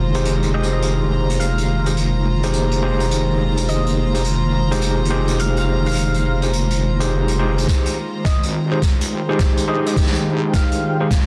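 A funky, playful glitch hop cut in F minor opens on a soft, detuned sawtooth pad holding an Fm9 chord, a heavy, saturated wobble bass up front, and a reedy, gut-string chamber section bowed close with light vibrato, all at 105 BPM with a 64% swing on the 16ths. Overdriven, gritty electric piano stabs ring through a combo amp with fast tremolo and dub echo, a distant, roomy acoustic kit plays hi-hat and snare with bundle sticks, and an edgy, tearing oscillator-sync lead sits in the background. At 7.7 s a thumpy, pitched-down electronic kick arrives for a build-up with a drum fill and a filter sweep on the lead, all under light reverb and a dense, heavily limited master.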